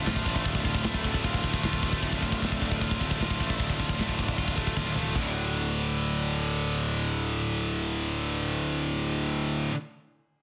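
A straight 4/4 pulse drives this heavy metal cut at 153 BPM, dark and heavy in D minor. Two distorted, high-gain electric guitars play the riff throughout, one sitting up front and the other with a scooped tone. A growly, punchy fuzz bass with overdrive holds down the low end beneath them. The acoustic drum kit, with its tight kick, medium-tuned snare, toms and bright crash and ride cymbals, plays from 0.1 s and closes with a fill that ends at 5.2 s. At that point the harmony moves from D minor to a D power chord, and the guitars and bass carry on alone. Light reverb and a small room ambience surround a dense, heavily limited modern master, and the passage is cut from a longer piece.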